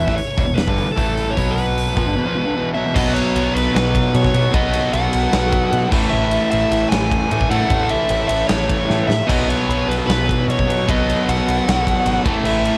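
Hard rock with an anthemic, energetic drive, this excerpt sets a dark, smooth overdriven lead guitar melody over picked riffs from a bright cranked stack guitar and a hollow-bodied overdriven semi-hollow guitar, joined at 2.9 seconds by a crunchy double-tracked guitar, all underpinned by a round, punchy picked electric bass and a huge, up-front arena drum kit with bright cymbals and a drum fill at 8.9 seconds, the guitars and drums carrying a cassette-tape grit within a studio-reverb home recording.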